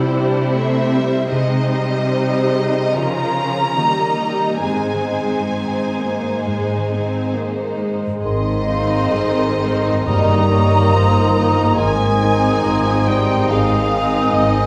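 Classical and serene, this tender rubato excerpt opens with a lush, vibrato-rich violin section singing the melody over a second violin line, dark expressive violas, ringing fingerpicked harp arpeggios and a focused cello bass in the background. At 8.2 s the woodwinds and brass fill out the texture: an airy flute, a dark cor anglais and a mellow bassoon add supporting lines, joined a moment later by a mellow clarinet, while a distant, roomy French horn section holds very quiet chords and a smooth, close double bass section deepens the low end. A very quiet, articulate timpani part enters at 10.1 s, and the whole orchestra sits in a hall-like reverb.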